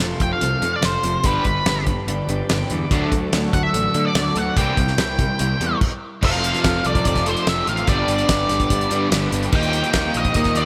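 A swaggering, driving classic rock passage cut from a longer piece opens on a boxy, ladder-braced acoustic guitar with slapback echo, a very quiet tonewheel organ holding smooth chords through a slow rotary speaker, and two overdriven riffing guitars, one bright and one hollow-bodied, over a punchy fuzz bass. At 0.2 seconds a dry, damped 70s drum kit with a fat snare and tight kick sits up front alongside a dark octave-fuzz lead guitar carrying the melody through wah and tape echo. A brief stop at 5.8 seconds sets up the second section, all of it bathed in a lush hall reverb for a big arena sound.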